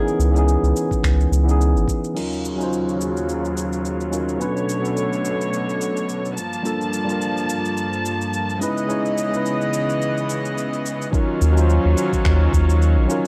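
A thumb-plucked flamenco guitar with 12-bit sampler grit and tape echo sits briefly in the background over a worn, slightly out-of-tune, lightly overdriven tine electric piano to open this relaxed, smooth sunset chillout cut from a longer piece at 107 BPM with a 16th-note swing, moving through minor ninth chords as a tape-warm smooth R&B kit of crash cymbal, finger snaps and shaker plays throughout, a deep, round analog bass and knocking electronic kick frame the opening, a rich, earthy chamber string section with light vibrato enters at 2.2 s and shares a filter sweep with the electric piano, and the kick returns at 11.1 s with the bass just after, all on a dry, gritty cassette recording.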